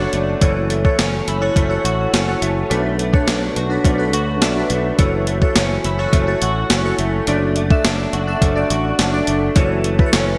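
An overdriven, sampler-style drum machine drives this nostalgic yet urgent slice of 1980s-style pop, its thumpy kick, medium-tuned snare and hi-hat sitting up front in gated reverb with the sound of a small room around them. A growly fretless electric bass sustains low underneath, while glassy digital keys with a sine-like tone, fast attack and filter sweep carry the accompaniment through chorus, adding a short fill at 4.1 seconds. A clean, compressed electric guitar, recorded direct, picks a warm riff, shimmering with ensemble chorus and digital delay. A very quiet metallic cowbell joins at 0.4 seconds. The harmony moves from F#m7 to Bm7 and back, touching D/F# before returning home, all within a bright digital production bathed in a lush hall reverb. The passage is cut from a longer piece.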